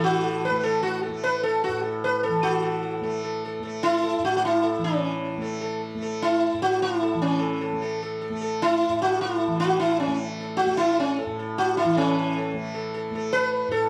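A dark, warm production with moderate recital hall reverb frames this devotional, serene passage of Hindustani classical music in raga Bhupali on A, moving at 151 BPM in 3/4. Up front, a round, plectrum-plucked sitar carries the melody, its sympathetic strings ringing, while a softly plucked tanpura sustains a buzzing, shimmering drone beneath it. Both play throughout, with the opening material returning at 12.0 seconds.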